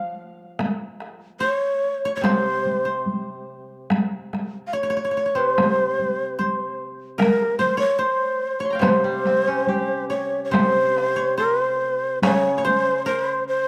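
A breathy, mellow end-blown shakuhachi carries the melody up front from the first moment, over two dry, woody koto parts plucked with fingerpicks, one tracing a high second line and the other a low accompaniment, while a taiko ensemble struck with hard sticks enters at 0.6 s and stops at 12.8 s in this calm, austere, rubato fragment of traditional Japanese chamber music, shifting to a new section at 10.5 s, all set in a dark production with moderate plate reverb.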